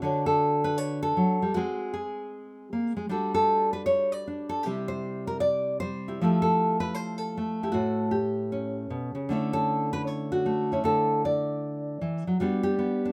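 Solo jazz on nylon-string guitar, relaxed and playful, swinging at 155 BPM in 4/4 with a lilting swung eighth-note feel in D major. The fingerpicked guitar sits up front with a warm, deep classical tone, and finger squeak gives the playing an intimate, human texture. It plays alone across the whole 13.1-second clip, ranging from A2 up to D5. The harmony moves through colourful extended chords, from Dmaj7 through G#9, Gsus2, Cadd9, Fmaj9 and A7 to Dmaj9, before touching G at 12.4 seconds. Light reverb gives the acoustic sound a gentle sense of space, and the piece is cut from a longer performance.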